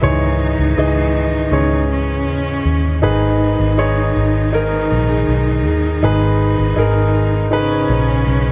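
A light reverb and small room ambience surround this recording, with a polished, present grand piano and a round, punchy electric bass placed up front. Cut from a longer pop ballad, the passage carries a heartbroken, melancholic mood over a straight 4/4 pulse. The piano supplies the accompaniment while the dark, foam-muted vintage bass holds the low end, and a clear, smooth cello section bows an even second line with vibrato. At 3.0 seconds a small, fingerpicked nylon-string guitar enters in the background with arpeggios, as the harmony moves from C#m to G#m. The studio sheen of the cellos set against the amped bass gives the music an aching, tender character.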